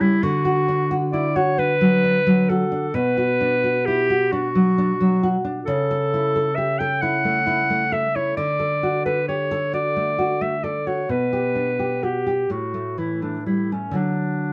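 In a slow, rubato 6/8 at 44 BPM counted in dotted quarters, this serene, romantic duo in D major unfolds as a short passage cut from a longer piece. A clear, vintage-toned clarinet with a soft attack sings the classical-style melody up front, while a fingerpicked nylon-string guitar with old strings gives deep, woody, full-bodied accompaniment, both playing from start to finish. Light reverb and a dark, warm production frame the harmony as it moves from D through Bm and A/C# back to D, then G/B and A5 before settling on D at 14.0 seconds.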